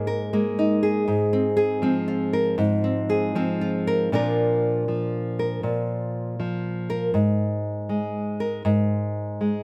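A fingerpicked nylon-string guitar, up front with fresh, classical-toned strings and light reverb, plays a pastoral solo folk passage in 3/4 at 119 BPM in Bb mixolydian, moving from Absus2 and Fm/Ab to a Bb chord at 4.1 seconds before the harmony falls away at 7.1 seconds in this brief cut from a longer piece.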